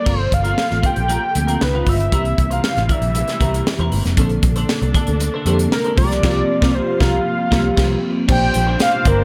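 Over a straight 4/4 groove from a punchy, gritty fusion kit and a round, foam-muted fingered bass, with soft-handed congas faint beneath, this glossy, urban 1980s jazz-funk pop fragment sets a fat, detuned sawtooth lead up front above a sparkling, chorused FM electric piano, a bright, twangy clean guitar riff and lush, dark strings in the background, with a band accent from 6.2 s before a mellow, octave-doubled horn section slips in at 8.3 s, all in a small room.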